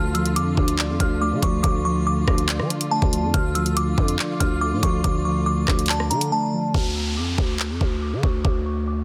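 A half-time drill groove at 141 BPM in D harmonic minor drives this tense, menacing hip hop excerpt: an overdriven, electronic drum kit with knocking kick, bright hats, handclaps and rim clicks sits up front beside a growling, buzzy 808-style bass, while a glassy, crystalline FM synth bell carries the high melody through chorus, tremolo and digital delay over muted, felt-like synth keys and a veiled, con sordino string section holding dark sustained chords, all in a dry, dense, heavily limited mix, until a brief silent gap at 6.3 seconds gives way at 6.7 seconds to a downlifter and filter sweep as the hi-hats drop out.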